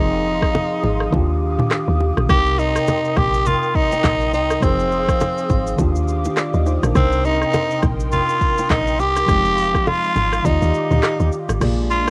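A swung sixteenth-note afrobeats groove in 4/4 sets a smooth, mellow mood in this short home-cassette recording, with an electronic, produced drum kit of deep kick, metallic hats, handclaps, rim clicks, shaker, toms and crash arriving at 0.4 s, and dry, hard-handed bongos and congas joining in the background at 0.6 s. A raspy, gritty tenor saxophone with vibrato carries the lead up front, over a worn, slightly out-of-tune tine electric piano with light overdrive and subtle chorus, an airy, breathy pad holding soft chorused chords, and a dark, round, percussive log drum bass. The chords cycle through Fm7, Ebmaj9 and Cm7 in a dry room, and the kick drops out at 11.6 s as the passage is cut from a longer piece.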